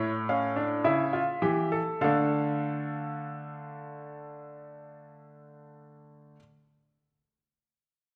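Driving yet solemn, this short passage cut from a longer piece is a baroque-style three-part fugue in D minor, played on a solo baby grand piano at 50 BPM in a straight 4/4. The piano sounds clear, intimate and natural, placed up front so that the noise of its action is audible, and it spans a range from A2 to F5. Over the first 2.0 seconds the tempo slows while the harmony rests on an A7 chord, which then resolves to D minor as the next section begins at 2.0 seconds. The piano stops at 6.4 seconds, and a moderate recital-hall reverb lingers around it, giving the up-front instrument a sense of the room.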